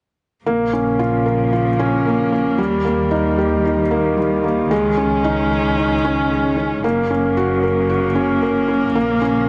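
Electronica at 113 BPM in 4/4 with a straight feel, this excerpt in Bb minor sounds intimate and moving. A felt-muted upright piano leads with a riff between G3 and Bb4, its mellow, vintage tone sitting up front with audible action noise and a tape echo trailing each phrase. Beneath it, a rich string quartet holds sustained chords with one player per line, bowed with vibrato, soft attacks and expressive portamento, also placed close to the listener. A dark chamber double bass section anchors the low end from Gb1 to Eb2, bowed as an ensemble with its own vibrato and gliding portamento. All three parts play together from 0.5 to 9.5 seconds through a progression of Bbm, Eb, Dbsus2 and Gb before returning to Bbm, wrapped in a moderate concert hall reverb and a soft top end that rolls off above 10.5 kHz.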